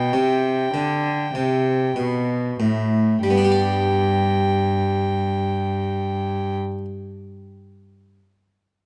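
Violin, harpsichord and cello sound together from the very start on a G major chord, opening this radiant, flowing fragment of a baroque-style sonata movement in a slow 4/4 at 48 BPM. Played by one player in period style, the violin carries the melody at G5 with a gut-string tone, light vibrato and a reedy edge. Below it, a single bowed cello holds the bass between G2 and D3, its sound nasal and rich, with the cello the loudest voice. The harpsichord fills in the continuo from A2 to D5, plucked on one set of strings with a round, full, Flemish-style character, close-miked and dry. The tempo eases back through the opening 3.2 seconds before a new section begins, and the strings fall silent at 6.6 seconds while the harpsichord rings on until 6.9 seconds, all heard through close, detailed microphones and a moderate scoring-stage reverb.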